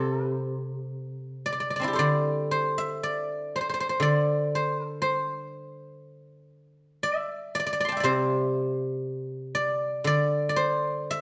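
A solo guzheng, played with fingerpicks, carries this short passage of Chinese traditional music, its silvery, ringing tone sitting up front in the mix. The mood is serene and pastoral, unfolding in a free, rubato feel around 59 BPM in 4/4. The instrument covers a broad span from C3 up to C6, and its bright acoustic strings fill the whole 11.2 seconds on their own. A moderate stone-room reverb adds a natural sense of space, as though the player were performing live in a single room. Cut from a longer piece, the fragment stays within one calm section from start to finish.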